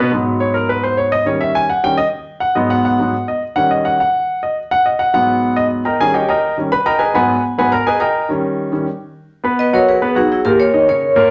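A concert grand piano opens this danceable, driving Latin excerpt alone, alternating G#m7 and D#7 chords in G# minor at a brisk 209 BPM; its sound is intimate and polished, with deep bass, short sustain and audible action noise. At 9.6 seconds an up-front vibraphone with medium hard mallets takes the melody, its bright, metallic, ringing tone carrying a medium motor vibrato. A wet club reverb surrounds the performance.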